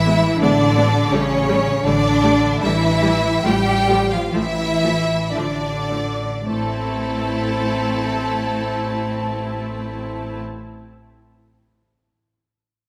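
In a rubato triple metre that slows through the first 6.5 seconds before settling on a minor chord, this elegiac, melancholic passage for string orchestra, cut from a longer romantic slow movement, sets an up-front violin melody with vibrato over a lush second violin line, smooth bowed violas, intense cellos and even double basses, with the violins and violas heard close and the whole ensemble set within the bloom of a concert hall.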